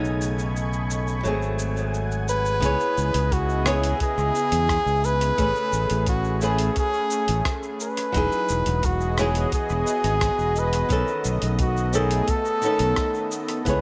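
A wistful sunset chillout fragment opens with fingerpicked flamenco guitar trailing dub echo, a lush, detuned unison pad with chorus, a punchy, up-front fingered electric bass with tube saturation, a gritty, tape-warm sampler-style kit of hi-hat, rim click and shaker, and an airy, wind-like noise texture that stops at 2.6 seconds, while a veiled, bucket-muted trumpet enters at 2.3 seconds for a forceful jazz-style solo with vibrato and a deep electronic kick joins at 2.6 seconds, all set in an echo-heavy digital ambience.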